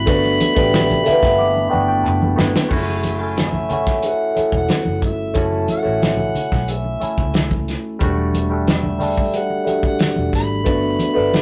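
A straight 4/4 groove from a cloth-damped, thuddy drum kit with a fat snare, alongside soft-handed congas in the background, carries this lush, cinematic 1970s-style soul piece, where a barky, lightly overdriven tine electric piano with phaser sits up front, a round, foam-muted fingered bass holds the low end, a mellow, distant harmonica carries the melody with scooped notes, a very quiet, slightly out-of-tune celesta adds bell-like shimmer until 7.8 s, and hollow group handclaps appear from 0.7 to 2.2 s, the whole captured in a rough rehearsal-room sound with warm saturation.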